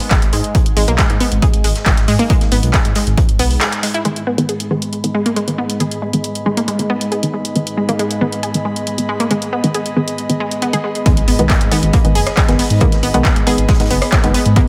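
A punchy, up-front electronic kick drives this hypnotic, industrial peak-time techno excerpt in G# minor at 137 BPM, joined by a deep, rumbling detuned saw bass and a bright, warbling unison pluck riff soaked in tape echo, while an analog drum machine's handclaps, hi-hat and rim click sound as if re-recorded in a large room, and a very quiet, natural vintage kit adds hi-hat and snare. A moody, wave-folded ambient pad drones underneath with sidechain pumping until 11.1 seconds; from 4.0 seconds a muted, mellow dub chord stab with delay fills the middle stretch, joined at 4.6 seconds by a soft, breathy airy pad, as kick and bass drop away and a filter sweep builds. At 11.1 seconds the kick, bass and kit return for the drop, marked by a faint electronic impact, all set in light reverb.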